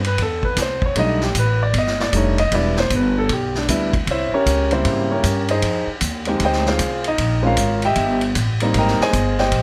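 Jazz piano trio playing a brisk swing at 154 BPM in 4/4, with a sophisticated, warm mood in this short excerpt cut from a longer piece. The concert grand carries the melody as a solo from the opening moments, ranging from Db3 to Bb5 with an intimate, polished tone, deep bass, long sustain and audible action noise that places it up front. Beneath it, the pizzicato upright bass on steel strings sounds woody and warm, moving between E1 and Ab2. The vintage drum kit sits mid-forward in a studio room, with dark cymbals on ride and hi-hat, a medium-tuned snare, a punchy kick and a rolled-off top. The harmony travels through rich changes such as Am9, B7alt, Fm9 and Abmaj9, and the close, detailed microphones with little reverb give the trio a dry, detailed sound.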